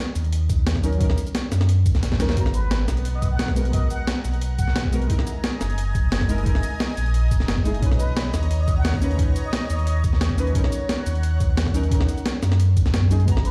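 A deep, dark chord stab with chorus and dub echo opens this lush, rolling liquid drum and bass excerpt, and a full, up-front sine sub bass with tube saturation follows almost at once alongside a gritty, tape-warm breakbeat kit of hi-hat, shaker and snare and a thumpy, compressed electronic kick, both drum parts set in small room ambience. After a brief drum fill, a breathy plunger-muted trumpet drifts in the background at 2.5 seconds with scooped notes, light vibrato and dub echo in short jazz-style phrases, and a thick, bright unison pad with phaser and sidechain pumping swells in just after at 2.7 seconds. The chords move from D#m7 through G#m9, F#13 and Bmaj9 before returning to D#m7, heard as if played on a big sound system in a bare room with large studio reverb.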